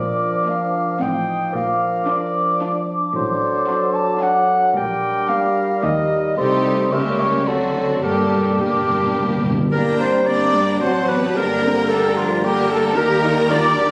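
Opening on a dark cor anglais, an airy, hollow flute group, a soft-attacked clarinet, a mellow bassoon, warm sustained horn chords, smooth cellos and focused double basses, this dramatic, restless classical-period orchestral passage in triple time, cut from a longer movement, brings in a lush, expressive violin melody with an even second violin line and rich violas using portamento at 0.5 s, then a hard-mallet timpani fill at 8.0 s, all heard from within a room with a moderate scoring-stage reverb.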